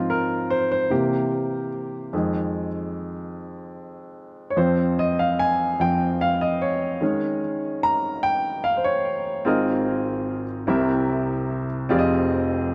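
A warm, natural-sounding baby grand piano plays alone and up front, its short-sustained notes touched with tape echo and set in a moderate plate reverb. This uplifting, soulful gospel passage moves in a slow 6/8 at 49 BPM (dotted quarters), spanning F1 to Bb5 through chords such as Ab6, C7, Fm9 and Eb7sus4. At 9.5 seconds it shifts to a new section opening on Ab69 before returning to Fm9, as this short cut from a longer piece comes to a close at 12.7 seconds.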